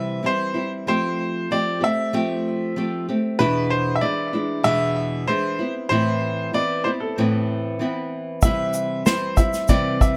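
A moderate studio room frames this heartfelt, easy-going acoustic pop passage, where a brilliant, woody upright piano carries the melody through plate reverb and digital delay over a fingerpicked, small nylon-string guitar moving from C through Fadd9, E7 and Amadd9, until an airy unplugged drum kit played with bundle sticks enters at 8.4 s with a punchy kick, shaker and medium-tuned snare.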